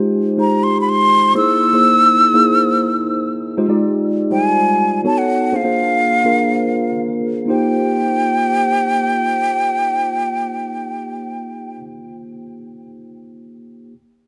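A mellow tine electric piano opens this breezy, urban pop passage, its clean chords heard as if through built-in speakers and coloured by a lush chorus. At 0.4 seconds a breathy concert flute enters up front with the melody, its tongued notes carrying vibrato and lifted highs in an expressive upper register. The piece moves at 122 BPM in a straight 4/4 in Eb major, tuned to A4 = 444 Hz. Its harmony travels through Fm7, C7alt, B9 and Bb9 before settling on Eb6 when a new section arrives at 7.5 seconds. The flute stops at 11.8 seconds, and the electric piano plays alone to the end of this fragment of a longer piece. Light reverb and a small room ambience give both parts a close, intimate setting.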